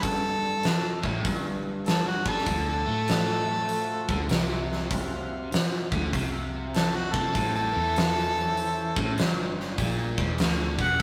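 Blues rock in a power-trio and southern rock vein, this gritty, raunchy excerpt swings at 98 BPM in 4/4 over a progression that moves from A5 to D7#9, A7#9 and E7#9. Up front, a clear harmonica carries the solo melody with vibrato, tongue slaps and scooped notes in a jazz style, its tone pushed through overdrive. Beneath it, a biting, double-tracked overdriven guitar picks a bright riff bathed in spring reverb, while a vintage foam-muted electric bass adds a dark, round low end. A big acoustic rock kit, also up front, drives the groove with a fat snare, a punchy kick and hi-hat in a bright stone room. From 2.5 s a smooth, clean tonewheel organ slips into the background with sustained chords through a slow rotary speaker. The whole take has the rough feel of a rehearsal-room recording, with light reverb and tube saturation.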